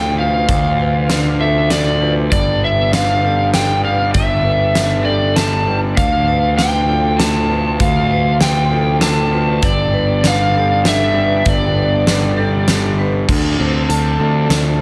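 An overdriven slide guitar carries a melancholic, tape-echoed melody up front in this cinematic post-rock excerpt at 98 BPM in 3/4 and D dorian, over a fuzz-laden picked bass, a big-room arena drum kit with a fat snare and punchy kick entering at 0.5 s, lo-fi guitar arpeggios through a small old amp in the background, ringing vibraphone arpeggios with slow motor vibrato, and a veiled, muted string section holding very quiet chords as the harmony moves between Dm and G before settling on Dm7 at 13.3 s.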